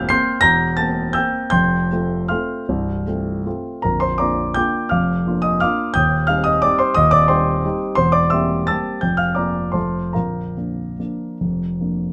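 Classical piano waltz in Bb major and 3/4, graceful and elegant, moving with a flexible rubato feel between 138 and 184 BPM across this 12.1-second excerpt from a longer piece. A solo grand piano carries everything, its warm tone with short sustain sitting up front and spanning from Bb0 to C7. Close, detailed miking and light reverb frame harmony that moves from C7/E through F, Bb and Cm/Eb before settling back on Bb at 10.2 seconds.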